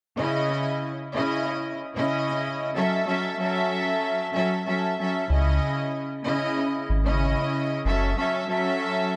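Heard through an echo-heavy mix with light reverb and a small-room ambience, this reflective, dark, gently swung hip hop excerpt puts a reedy, gut-string studio string section up front, bowed with light vibrato and trailed by analog delay over C#madd9 and F#m7 chords, while a deep, round dub sub bass joins at 5.3 s and sustains until 8.1 s.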